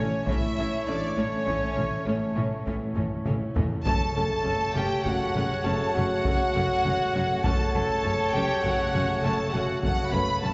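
Epic orchestral film score in a triumphant, adventurous 12/8 at 67 BPM, where a smooth, vibrato-rich violin section carries the melody alongside a second violin line and a hollow, pure silver flute, over a very quiet expressive viola accompaniment, sustained chords from a soft-attack French horn section and punchy trombones, mellow trumpet stabs on C#5, bowed cellos and portamento double basses holding the bass, and a heavy-stick taiko ensemble entering at 0.3 s with a fill from 3.0 to 3.9 s, all moving from A to F#m in a drenched church reverb that cuts off the highs.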